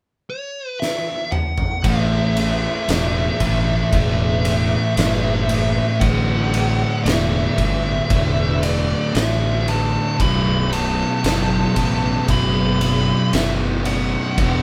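A slow, straight 4/4 at 57 BPM anchors this sludgy, brooding stoner and doom metal passage in B minor, cut from a longer piece. A compressed fuzz lead guitar opens the melody at 0.3 seconds, high in the C#5 to B5 range. An oversized, low-tuned drum kit enters with a fill at 0.8 seconds; its boomy kick, fat snare, toms and ride sit up front in a bright, pumping stone room. At 1.8 seconds the full riff arrives over A5, D and B5 chords. Two thick fuzz guitars, one dark and one warm, join a double-tracked, overdriven semi-hollow guitar in the background. Beneath them, a growly fingered electric bass carries fuzz and overdrive, captured both direct and amped, and the whole band plays live in one room with light reverb.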